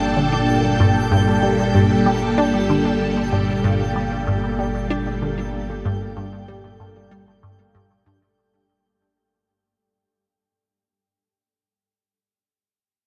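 A phased string machine anchors this hypnotic, expansive slice of sequencer-driven space music, its swirling, vintage chords sitting up front under ensemble chorus and phaser. Beneath it an analog drone holds a low bass note, slowly evolving with pulse-width modulation and chorus, while a twinkling granular layer adds a sparkling, octave-up shimmer high above. At 0.2 s a resonant blip pluck enters with a juicy, squelchy riff of short filter plucks, treated with phaser, lush chorus and tape echo. In the background, a mellow concert harp plays ringing, fingerpicked arpeggios through tape echo. The whole piece is bathed in a huge, wet ambient reverb, and a fade-out begins at 1.6 s, leaving the harp to ring on alone until 11.5 s in this short cut from a longer work.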